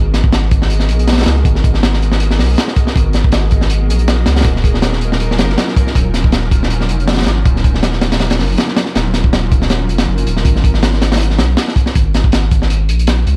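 Dark, warm production with vinyl crackle and small-room ambience frames this atmospheric yet frenetic drum and bass excerpt at 160 BPM in G# dorian, where a thick, saturated sine sub bass sits up front beneath a gritty, crunchy breakbeat kit of hi-hat, tight kick and high-tuned snare with a rolled-off top, the kick briefly dropping out from 9.7 to 10.5 seconds before the groove returns.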